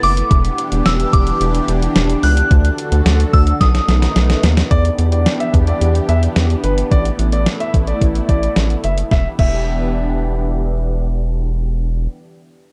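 A rubbery, bouncy square bass sits up front in this driving, nocturnal synth-pop excerpt alongside a thumpy, sampler-style 12-bit drum machine with a fat snare that plays a fill from 3.6 seconds. A soft FM synth bell carries the opening melody through chorus and digital delay, while a thick, detuned unison pad holds sustained chords under chorus, phaser and a low-pass filter. At 4.7 seconds a clear concert grand piano with audible action noise adds a second line through its own delay, in a dark, lightly reverberant production over chords moving from Em7 through D and B7 to Asus2.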